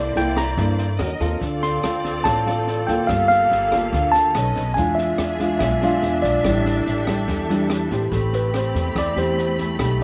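Intimate and smooth, this bossa nova moves at 143 BPM in a straight 4/4, led by a worn, slightly out-of-tune tine electric piano melody colored by phaser and slapback echo, which takes a solo from 8.1 seconds before falling silent at 9.6 seconds. Beneath it, a thumb-plucked nylon-string guitar with fresh strings plays classical-style accompaniment, a woody pizzicato upright bass anchors the low end, and a distant, lush bowed string section holds sustained chords with vibrato. An acoustic jazz drum kit with a high-tuned snare, rim click and boomy kick enters at 0.2 seconds with its own slapback echo, and the whole performance sits dry and outdoors with little reverb over chords such as C13, Gm9 and E7b9.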